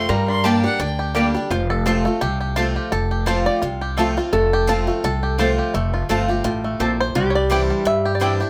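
Bluegrass with a driving, rustic swing, this excerpt opens on a brief rich, distant bowed fiddle solo that stops at 1.2 seconds, handing the lead to a twangy, up-front fingerpicked five-string banjo from 1.5 seconds while a nasal, metallic slide resonator guitar carries a second line, a bright, boxy parlour guitar picks the accompaniment, a mandolin adds woody double-string stabs, and a thumpy, dark upright bass plucks underneath, all in a small room.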